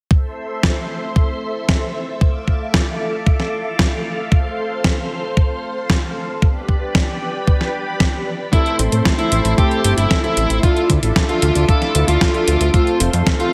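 Bittersweet and danceable, this italo disco excerpt opens with lush string machine chords carrying ensemble chorus over a thumpy electronic kick and a clean 12-bit drum machine's hi-hat and fat snare, both tape-tinged, up front and set in small room ambience, the drum machine framed by gated reverb. At 8.5 seconds a dark, overdriven lead guitar enters with a delayed melody alongside brassy synth stabs bearing chorus and sampler grit, and a fat, detuned analog bass joins just after. The chords cycle through Am, Dmadd9, F and G under a light reverb.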